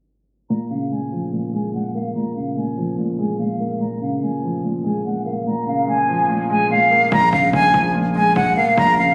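Captured on a phone in a small room, this compressed, low-pass-filtered cut from a longer drill hip hop track carries light reverb and a filter sweep running from 0.5 to 7.1 seconds. At 145 BPM in a half-time 4/4 feel, a breathy concert flute with vibrato and tape echo sits up front, carrying a cold, menacing melody over a soft, felt-muted upright piano whose mellow Bbm7 accompaniment in Bb minor lets its action noise come through. At 7.1 seconds a distorted, saturated 808-style bass arrives with a heavy, fast-attacking, decaying low Bb that plays through to the end.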